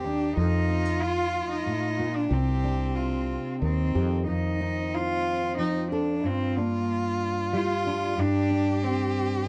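A bowed cello carries the melody with a pure, floating sul tasto tone alongside a dark, expressive violin second line rich in vibrato and portamento, while a fingerpicked nylon-string guitar with audible finger squeak gives deep classical accompaniment and a round, growly fretless electric bass with subtle chorus appears only from 0.4 to 4.2 seconds, all in this melancholic, intimate acoustic folk-pop ballad at 93 BPM in 3/4, captured dry and close in a 1970s-style studio as it moves through F7, Cmadd9 and Gm7.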